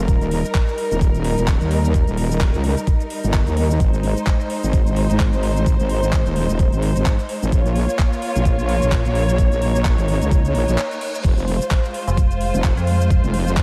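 Bass house at 129 BPM with a swaggering, gritty strut and a 16th-note swing, built on a heavy, saturated wobble bass with chorus and overdrive that pumps against an up-front knocking kick, while distant, woody symphonic strings hold dark sustained chords over Eb, Ab, Bbm and Fm, a tape-warm garage kit adds metallic hats, handclaps, shaker and crash, a background reverse cymbal leads into a brief break at 10.8 seconds, and a digital, metallic FM bass with overdrive cuts in at 12.1 seconds, all in light reverb and digital ambience.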